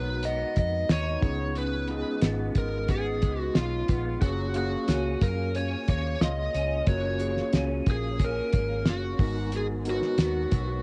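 Laid-back and dreamy, this short indie and bedroom pop excerpt in F# major drifts at 90 BPM in a straight 4/4 over G#m7, C#7 and F#maj7 chords, with an up-front overdriven slide guitar carrying the melody with subtle chorus, a twangy, slightly broken-up electric guitar through a small old amp adding chorus and vibrato, a mellow tine electric piano through its built-in speakers, a round, foam-muted vintage fingered bass, and a cloth-damped, thuddy drum kit with a fat snare and tight kick entering at 0.2 seconds, all set in a small room with the character of a home cassette recording.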